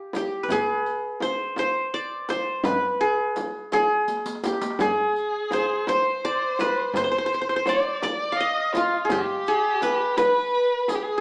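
A straight 6/8 pulse at 56 BPM carries this longing, hypnotic Arabic maqam ensemble, where a bright-edged, fingerpicked qanun with triple strings leads the melody up front over a deep frame drum, a very quiet, crisp metal-shell darbuka and a jingling riq in the background, with a drum fill at 4.1 seconds just before a dark, bowed violin enters at 4.8 seconds as an expressive second line full of vibrato and portamento, the band playing live in one room with wet, large studio reverb and a small speaker sound.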